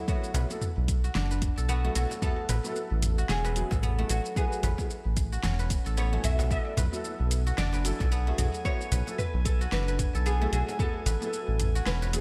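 Mystical and earthy, this organic downtempo excerpt in B dorian moves at 112 BPM with a swung 16th feel, pairing a bright, plectrum-plucked oud melody carrying 12-bit sampler grit with silvery fingerpicked guzheng arpeggios and a soft felt-muted upright piano with audible action noise, all washed in delay and shimmer reverb, over a round, dark analog bass that pumps with the sidechain up front, a tape-warm deep house kit with fat snare and metallic hats, a deep electronic kick that stops at 10.9 seconds, a woody cajon in the background, and a glassy drifting harmonics texture entering at 7.2 seconds as the chords sway between Bm9 and Amaj9.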